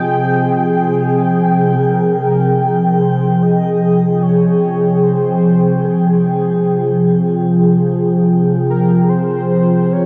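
Spacious and reflective, this free-time ambient excerpt opens on an up-front, detuned sawtooth pad holding Fm7 over a very quiet, nasal analog drone with pulse-width movement, then at 1.8 seconds a velvety synth lead with vibrato fades in on an Fmadd9 chord, trailed by shimmer reverb and diffuse delay, all set in a dreamy mix soaked in huge reverb.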